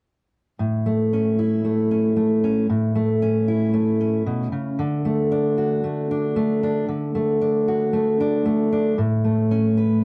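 A fingerpicked steel-string acoustic guitar, full-bodied and up front with audible finger squeak, carries this uplifting, anthemic folk fragment in A major at 114 BPM in a straight 4/4, moving from A to D and settling on Aadd9 around 9.0 seconds, all bathed in light reverb with lossy compression artefacts.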